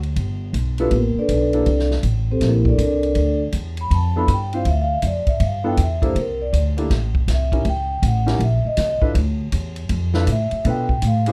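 A dark, dry production frames this playful, relaxed slice of small-group swing and bop, with a woody, growly pizzicato upright bass up front and a natural-sounding drum kit with a punchy kick, medium-tuned snare, ride and hi-hat swinging beneath it. A mellow, close-miked vibraphone played with soft mallets and the motor off takes a ringing solo from 0.8 seconds, moving through chords like G69, C13 and C#dim7. A present baby grand piano adds accompaniment, briefly at the start and then again from 4.2 seconds.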